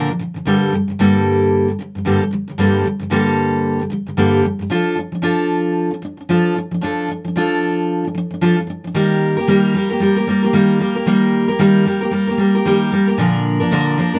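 A lightly swung 16th-note pop groove carries this sunny, carefree excerpt for solo picked steel-string acoustic guitar, its full-bodied jumbo tone sitting up front in close, detailed sound with light reverb as the chords move from Gmadd9 and Dm/F to Eb and Bb, shifting into a new section at 9.0 seconds.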